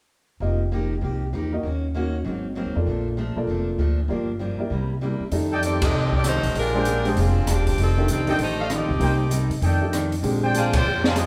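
A swinging 4/4 pulse at 195 BPM drives this brassy, joyful big band excerpt in F mixolydian, cut from a longer piece. The opening stretch is carried by a picked steel-string acoustic guitar, a grand piano with long sustain, and a woody, thumpy upright bass on gut strings that sits up front, moving through chords such as F9sus4, Ebm7 and Bbmaj7. At 5.3 seconds the open drum kit arrives with dark cymbals, a high-tuned snare and a boomy kick, and the harmony settles onto F13 and Bb13. A tight, edgy saxophone section with light vibrato and a soft attack takes the melody up front, while a clear trumpet section with a smooth top adds stabs. Band accents land at 5.8 and 10.7 seconds, and the whole group plays live in one room, bathed in a wet large studio reverb.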